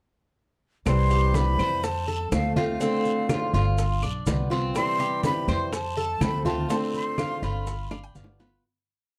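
Warm and sunny, this short Cuban son and guajira piece in C major moves at 123 BPM in a straight 4/4, riding a montuno vamp over C, F, Dm7 and G7 from 0.9 seconds. A breathy, vibrato-laced metal flute sings motif-based song phrases above a boxy, up-front old ladder-braced acoustic guitar strumming with muted slaps, a thumpy upright bass playing a tumbao that anticipates the chords, and a bright, metallic Cuban tres weaving an arpeggiated guajeo from 1.1 seconds. Low-tuned congas, tight saturated bongos, woody claves on a two-bar time line, raspy guiro and grainy maracas sit in the background of a dark production, while a full-bodied nylon-string guitar adds answering phrases in the melody's rests from 7.9 seconds as a drum fill arrives during the fade-out.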